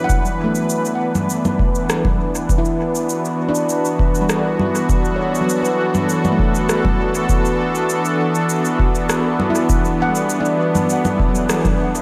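A deep analog electronic kick sits up front at a steady 100 BPM in straight 4/4, joined by overdriven electronic shaker, congas and rim click treated with dub echo, both re-recorded in a large room. Over them, this spacious, deep ambient dub fragment in E minor rests on a single Em7 chord, carried by a smooth, detuned sawtooth pad with chorus and tremolo, while a ringing nitrided-steel handpan spins airy arpeggios through tape echo. A dark, breathy wind-like tuned noise layer hovers in the background, the whole band lands an accent at 11.5 seconds, and a moderate, lush hall reverb opens up the space.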